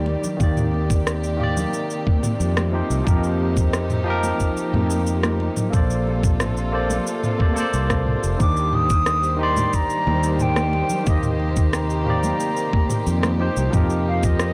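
A dry, gritty excerpt of relaxed, sunny sunset chillout at 90 BPM, where a thumpy, compressed electronic kick and a round, up-front fretless bass anchor an overdriven R&B drum kit of rim click, shaker and toms, background congas, a bright, barky tine electric piano through analog delay and dark, sul tasto chamber strings holding soft-edged chords over Cm9/Eb, F9sus4 and Bbmaj9, before a pure, distant silver concert flute takes the melody at 8.4 seconds.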